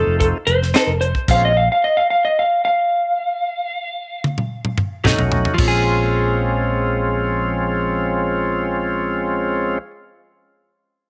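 A dark, slightly broken-up slide guitar opens this smoky, soulful soul blues excerpt in Bb minor at 112 BPM, leading over a reedy, key-clicking tonewheel organ with overdrive and slow rotary speaker, a round fingered bass and a tight, dry funk kit with a high-tuned snare whose fill runs from 3.4 to 5.6 seconds, before organ, bass and a clean, chorus-lush direct guitar with picked stabs in the background return at 5.0 seconds in a small room.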